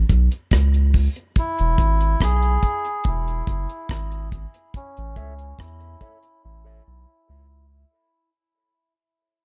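A round, soft sub bass sits up front in this hazy, spacious dub reggae piece at 71 BPM, joined almost at once by a tight-kicked acoustic drum kit playing hi-hat, kick and rim click, with a very quiet trace of low-tuned bongos. From 1.4 seconds a reedy, breathy melodica carries the tune over E and then A, muffled by a low-pass filter and trailed by tape echo, while a dark, clean electric guitar slips in faintly at 5.2 seconds with its own echo. The echo-heavy mix carries little reverb, and a filter sweep and fade-out run through the whole cut.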